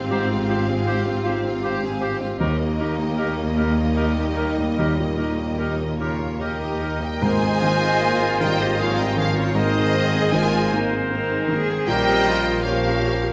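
A rubato 3/4 pulse at 78 BPM carries this hopeful, tender cinematic film-score excerpt, where a lush, distant violin section sings the melody over a focused second violin line, an intimate felt-muted upright piano and a very quiet viola section, while a classical-style French horn section holds sustained chords, dark, woody cellos and double basses anchor the bass, a clear oboe, a pure flute and a roomy clarinet add second lines, and close, dry timpani sound briefly from 7.2 to 8.4 s as the music settles into Ab major, all bathed in a wet scoring-stage reverb.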